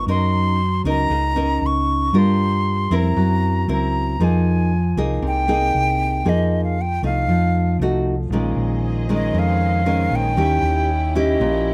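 Bossa nova in F minor at 117 BPM, this melancholic, intimate passage is cut from a longer piece and moves through chords such as Gm7, Gb7#11, Fm11 and F7b9. A reedy silver concert flute carries the melody up front, its airy tone shaped by a crisp attack and vibrato. Underneath, a fingerpicked nylon-string guitar supplies full-bodied classical accompaniment, with finger squeaks audible through the close, detailed microphones. A hollow-body short-scale electric bass, played with the fingers, sits up front with a dark, round, amped sound. At 8.3 seconds, as the harmony turns to Bbm11 and Eb7b9, a distant studio violin section enters with lush, smooth bowed chords, and light reverb lends the whole passage a soft sense of space.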